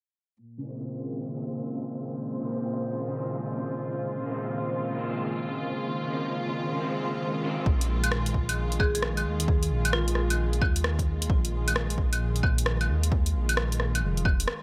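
A dark, detuned saw bass rumbles up front from 7.7 seconds, deep and beating, its sustained tones pumping to the sidechain in this ghostly, nocturnal future garage excerpt at 132 BPM in Bb minor, with a 65% swing on the sixteenths. Before it arrives, a dark studio string section holds sustained Bbmadd9 chords from 0.4 seconds, bowed sul tasto with light vibrato and a soft attack, close and intimate, also pumping to the sidechain. Beside the strings, a slightly broken-up electric guitar plays fingered accompaniment through ensemble chorus, tape echo and a low-pass filter under a sweep, while a glassy texture of drifting overtones hovers calmly in the background. At 7.7 seconds the harmony settles on Bb5 as a punchy electronic kick enters, with a deep house kit of claves, rim clicks and dark hats joining a moment later, both re-recorded in a small room and placed up front. Briefly, a background marimba struck with medium hard mallets adds a short melody through tape echo, all within a light digital ambience.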